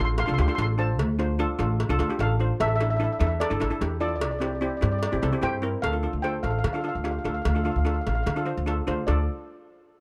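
A woody, up-front upright bass stands out in this short calypso clip, played pizzicato on steel strings in the low register beneath two steel pans. The melody comes from a double-seconds pan struck with soft rubber sticks, its tone mellow, vintage and band-limited. A second double-seconds pan, played with hard rubber sticks, supplies bright, up-front accompaniment. From 0.2 seconds a metallic cowbell sits in the background with a small-room acoustic sound. The mood is intense and tense, in a straight 4/4 feel, with the harmony moving from Dm7 to Asus4 and C before settling on Dm as a new section begins at 5.8 seconds. Close, detailed microphones and little reverb let the shimmering pans ring clearly.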